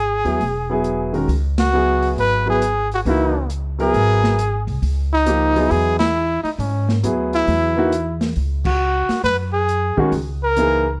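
A mellow trumpet carries the melody from the very start of this 11-second excerpt of cool, intense modal jazz in C# dorian, swinging at 136 BPM over an upright bass played pizzicato with a woody, up-front tone. The trumpet sings with vibrato and scooped notes, its smooth top bathed in plate reverb as it ranges from C#4 to B4. A baby grand piano, natural and up front, supplies accompaniment just after, moving from Abm7 into a long stretch of C#m11 before settling on a rootless B/C# near the close. An acoustic drum kit sits lower in the mix with a dark, rolled-off character, its dark cymbals, medium-tuned snare and boomy kick heard in a small room. The band hits accents together at 1.5, 5.9 and 8.6 seconds, and a light reverb wraps the whole ensemble.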